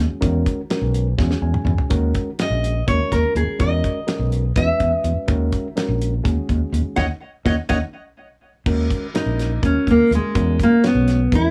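A fingerpicked nylon-string guitar, bright and full-bodied with audible finger squeak and tape echo, carries the melody from 2.4 seconds over a driving, funky electric jazz fusion groove in 7/8 at 249 BPM in Eb phrygian, where a warm fingered electric bass and a dry, damped 70s drum kit with a fat snare and dark cymbals sit up front beside a reedy, clean electric piano that joins the drums for fills at 1.2 and 7.9 seconds as the chords move between Emaj7 and Ebm7 in this short, dry cut from a longer piece.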